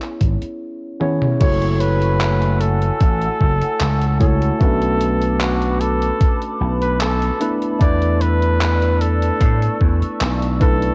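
Woozy and hazy, this vaporwave excerpt drifts at 75 BPM in 4/4 with a straight feel in F# minor, cut from a longer piece. A clean tine electric piano through a combo amp opens with lush chorus, analog delay and 12-bit sampler grit, joined by a detuned 8-bit drum machine whose overdriven crash, handclaps, hi-hat and toms carry gated reverb, along with a thumpy, overdriven electronic kick re-recorded in a small room. Up front, a punchy vintage slap bass with tube saturation anchors the low end, and a drum fill at 1.0 seconds leads into the main passage. At 1.4 seconds a clear flugelhorn takes the solo melody in a jazz style, with vibrato, a soft attack, scooped notes and tape echo. A warbling, nostalgic pad built from square and triangle waves with a sub octave enters at 2.0 seconds, its slow attack and long release sitting mellow in the background under chorus and reverb. The harmony moves from C#m7 through F#m9 and Bm9 to E7sus4, all wrapped in light digital ambience and a cassette-tape haze.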